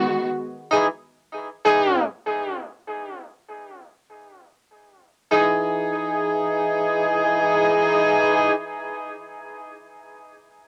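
A jazz-style horn section plays tight, up-front stabs, entering at 0.7 seconds and continuing until 8.5 seconds. The horns sound warm and present, with a light vibrato, and they are filtered at both the low and high ends, soaked in cassette tape colour and trailed by an analog delay. The mood is moody and dark, fitting the hip hop setting of this fragment cut from a longer piece. The harmony rests on a lush major-seventh chord, drops away to bare stabs, and returns to that chord when a new section begins at 5.3 seconds. A light reverb and the grainy character of a home cassette recording give the whole piece a hazy, intimate feel.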